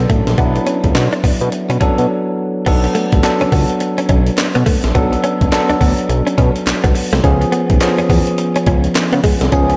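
Punchy and bouncy, this new jack swing R&B passage moves at 105 BPM with a swung sixteenth feel, driven by a gritty, compressed breakbeat sampler-style kit with thumpy kick, high-tuned snare, hi-hat, handclaps, tambourine and crash, plus a fat, detuned sawtooth analog bass, a bell-like tine electric piano with slapback echo moving from Bm7 to C#7 at 7.2 s, and a clean, direct-recorded picked electric guitar riff with chorus and slapback, while a crisp, barely audible group handclap enters at 3.2 s after a brief break at 2.1 s, the mix sitting in a lush hall reverb that gives a big arena sound.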